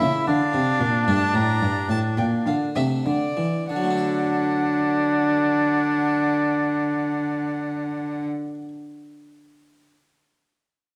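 Opening with all four parts together, this grave yet flowing excerpt from a baroque-style classical sonata movement in a rubato 12/8 at about 62-79 BPM (dotted quarters) has a gut-string violin with light vibrato carrying the melody over a smooth-topped, up-front oboe second line, bright plucked harpsichord accompaniment and a rich, close bowed cello bass, easing back through the first 3.7 seconds on D minor before shifting to D major, in a reverberant recital hall.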